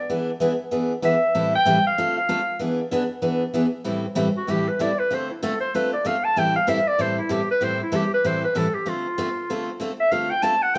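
Caught live in a stone room with a moderate reverb, this brief cut of swinging minor-key jazz puts a punchy, vintage-toned clarinet up front, playing a virtuosic, bittersweet solo with light vibrato from 0.0 seconds, while a full-bodied, fresh-stringed picked acoustic guitar with a bright edge enters at 0.1 seconds to accompany it through E7, Am7 and Dm7 changes.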